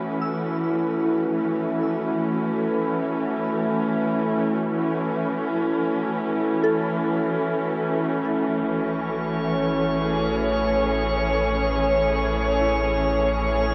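Drenched in a huge ambient reverb and a worn, warbling cassette-tape drift, this luminous, weightless fragment from a longer ambient piece floats freely over its opening A69 chord. Up front, a muted string section holds dark, veiled chords with vibrato through a low-pass filter, while in the background a soft FM synth bell fades in with chorused, tremolo-laced arpeggios and delay, and a wave-folded drone sweeps its moving overtones. At 8.6 seconds the harmony shifts to Amaj7 as a filter sweep passes over the strings and a round sine sub bass enters, joined at 9.0 seconds by a bright, glassy harmonics texture drifting on chorus and its own reverb.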